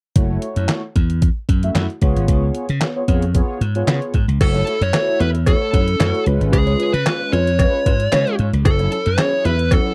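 A detuned 8-bit digital drum machine, slap bass and mellow synth brass open together on this danceable, funky slice of early-eighties boogie funk, moving at 113 BPM in a straight 4/4 in F# minor. The drums sit up front with a thumpy kick, medium-tuned snare, handclaps, hi-hat and crash, their sampler-style sound tape-warm and re-recorded in a small room. Beside them the bright, punchy, amped slap bass drives the low end, while the synth brass holds sustained, round chords with a fast attack, chorus, tremolo and vibrato over a harmony that moves between F#m7 and C#7. At 4.4 seconds a dark, smooth lead guitar takes the melody with an overdriven, picked tone. At the same moment a clean, compressed, fingered electric guitar riff and a metallic cowbell join in the background. The dry, close recording has the feel of a 1970s studio, and the excerpt is cut from a longer piece.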